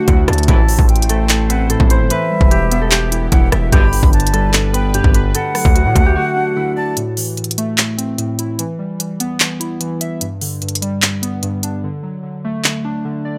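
A ringing, thumb-plucked Celtic harp melody, an airy concert flute line with vibrato and digital delay, warbling lo-fi synth keys under chorus and a low-pass filter, and a very quiet resonant pad holding sustained chords together open this brooding, eerie half-time trap cut. A trap drum kit with a knocking kick, crisp hats, handclaps and rim clicks sits up front beside a heavy, saturated 808-style bass, while a brass ensemble adds two brief classical-style stabs. The bass drops out at 6.2 seconds and the flute and pad stop at 7.0 seconds, leaving the harp until 9.2 seconds and the nostalgic, mellow keys and drums carrying the rest.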